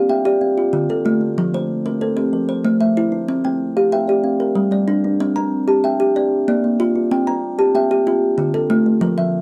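Southern African traditional music in 12/8 at 125 BPM, hypnotic and rippling, with two kalimbas playing arpeggios through C mixolydian for the full 9.4 seconds of this fragment cut from a longer piece. The louder kalimba, a solid-board instrument plucked with the thumbnail, sounds short, woody and boxy. Beside it, a softer hollow-box kalimba is plucked with the fingertip, mellow and ringing, both up front in a dry, close 1970s-style studio sound as the chords move from Dm through F, Am, C and Gm, then shift at 5.2 seconds to a passage circling C and Bb before settling on Dm.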